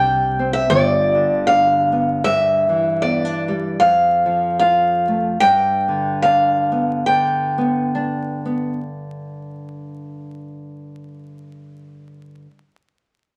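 Vinyl crackle and a wet studio reverb give this short excerpt the feel of an old record, heard through a studio room. It is a hopeful, peaceful piece of acoustic folk for a small group, in G mixolydian and 4/4, with a gentle swing on the eighth notes and a tempo of 66-78 BPM. Up front, a picked old ladder-braced acoustic guitar carries the melody in a boxy, high register between D5 and G5. Beneath it, a fingerpicked nylon-string guitar supplies warm, classical accompaniment, while a pizzicato upright bass adds a woody, growly, thumpy low end before dropping out at 2.2 seconds, just as the music begins slowing down. The harmony moves from Csus2 through G7, G6 and F before settling on G. The lead guitar stops at 8.4 seconds, leaving the nylon-string guitar to play alone until 12.5 seconds.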